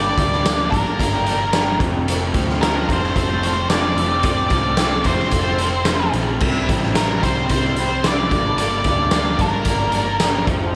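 A big arena sound framed by moderate lush hall reverb carries this restless, bittersweet indie rock cut at 110 BPM in G dorian, where a dark octave-fuzz lead guitar with slapback echo carries the melody over two background riffs, one from a bright, compressed distorted guitar with ensemble chorus and the other from a twangy, slightly broken-up guitar through a small old amp, both also with slapback echo, while a round hollow-body short-scale bass and an up-front, gritty garage drum kit with punchy kick, snare, hi-hat, crash and tambourine drive the Gm, F and C changes.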